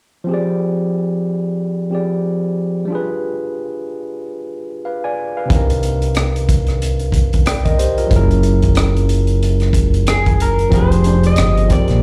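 Soulful and introspective, this short neo-soul and R&B cut from a longer piece moves with a loose, swung 4/4 feel. A barky, overdriven tine electric piano opens alone at 0.2 s, sitting up front through a combo amp with a plate reverb as it carries chords such as Fm69, G7b9, Cm7 and Gb9. At 5.5 s a round, punchy fingered electric bass and a crunchy breakbeat kit of hi-hat, kick and rim click arrive, the drums dark and saturated with a rolled-off top. An electric guitar through a small old amp takes the melody at 10.1 s, slightly broken-up and compressed with its own plate reverb. A second, lo-fi guitar line appears only briefly underneath. The whole performance sounds like a live gig heard through the venue's PA, with a club reverb around it.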